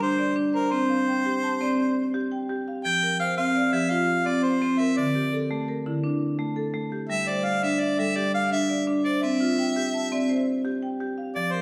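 The recording sits in a reverberant recital hall and is heard from further back in the room, with a wet tail around the instruments. This is a short cut from a longer piece of southern African traditional music in 12/8 at 113 BPM, counted in dotted quarters, with a straight, hypnotic, trance-like feel. A marimba struck with hard mallets plays arpeggios across a broad span from D3 to A5, its percussive, boxy tone placed up front. A harmonica carries the solo melody between Bb4 and G5, warm in tone with light vibrato, tongue slaps and scooped notes in a jazz-inflected style. The harmony moves from Gm through C5, F5, D5 and G5 before arriving on C near 9.2 seconds, and both parts play together throughout the 11.6 seconds.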